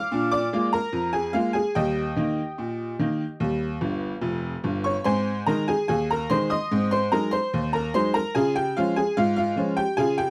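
Cheerful and jaunty, this short ragtime piano excerpt moves at 73 BPM in a straight 2/4, set in Ab major with tuning a touch below standard at A4 = 436 Hz. A solo tack piano carries it all, jangly and metallic with a boxy, up-front presence, spanning F1 to F6 in a dry, close 1970s-style studio sound with light reverb. A honky-tonk fill from 3.8 to 5.1 seconds stands out as the harmony moves from Bb7 through Eb to Ab, then Ab7 and Db.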